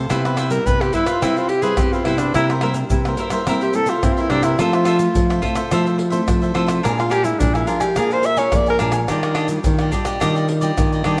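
Set in a moderate echo-chamber reverb with small-room ambience, this playful, lively samba and choro excerpt in C major at 107 BPM has a breathy, up-front alto saxophone carrying the jazz-style melody with light vibrato, subtone and tape echo from 0.5 to 8.8 seconds, over bright, crisply picked cavaquinho, a fingerpicked nylon-string guitar in the background, a thumb-plucked nylon-string bass line with audible finger squeak, and close, dry tube shaker, deep surdo, pandeiro and tamborim played with hard hands, as the chords move from Cmaj7 through C7, Fmaj7 and Bb7 to Ebmaj9.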